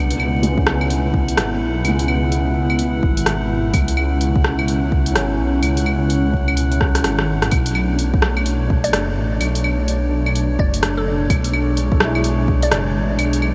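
Soaked in a huge, dreamy reverb and dusted with vinyl crackle, this melancholic, rainy future garage excerpt moves at 127 BPM with a swung 16th feel over C#m7 shifting to Bm9 at 7.5 seconds. A dark, rumbling detuned saw bass sits up front and pumps beneath an airy, breathy pad, while a soft felt-muted upright piano with audible action noise rests in the background and a drifting glass-harmonics texture hovers above. Tape-warm deep house drums with claves, hi-hat and rim click enter at 0.1 seconds and are joined by a deep layered kick from 0.6 seconds. After a drum fill, a crystalline wavetable pluck carries a brief melody from 8.8 seconds through chorus and diffuse delay.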